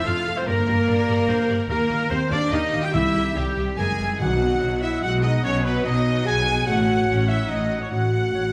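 Heroic adventure film score in a brisk 3/4 at 146 BPM, where a lush, vibrato-rich studio violin section carries the melody over mellow, punchy French horn chords, tight trumpet stabs, a woody cello section and deep double basses, with a hollow flute, bright oboe, clear clarinet and distant symphonic violins adding second lines, a viola section filling the accompaniment, a ringing harp arpeggiating softly, timpani entering at 2.9 s, and the whole excerpt bathed in wet scoring-stage reverb as the harmony shifts from G minor to a B chord at 4.2 s.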